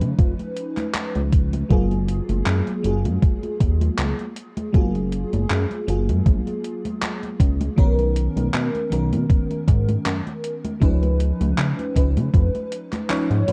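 Vaporwave at a woozy, dreamy 79 BPM in F# major, this dark-produced slice of a longer piece pairs a lush FM electric piano with a soft pad layer, treated with phaser, chorus and delay and moving through ninth chords, with a glossy, mellow chorused synth bass, gated 80s drum-machine congas, handclaps and hi-hat, and a thumpy, overdriven electronic kick that drops out at 13.1 seconds as the band hits a final accent.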